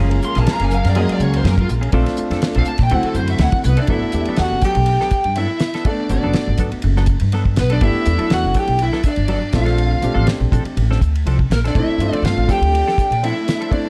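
Dry, dark production frames this soaring, bright electric jazz fusion at 122 BPM with a light sixteenth-note swing, where a distorted, picked lead guitar opens with a solo over lush bowed strings, a clear grand piano, clean compressed stabs with chorus and slapback echo from a semi-hollow guitar, a woody pizzicato upright bass up front and a damped 70s drum kit with a fat snare, before a warm tenor saxophone with vibrato adds a second line from 3.7 s, the music settles into G major at 3.9 s, and the strings return at 11.8 s.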